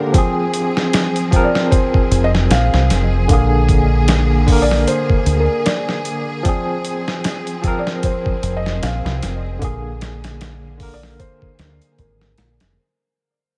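A barky tine electric piano with tremolo, gritty 12-bit sampler texture and tape echo opens this melancholic, brooding trip hop excerpt at 76 BPM, joined by lush, bowed symphonic strings holding sustained chords and a dusty, compressed sampler-style kit with a thumpy kick, swung 16th-note feel and studio reverb. A soft, felt-muted upright piano carries the melody from 1.4 seconds, its action noise audible and its tone mellow and intimate under tape echo, while a deep, round dub bass enters at 2.1 seconds and sits up front over a brooding Fm to Bb7 progression. Vinyl crackle and a light digital ambience colour the whole recording as it fades out from 4.3 seconds.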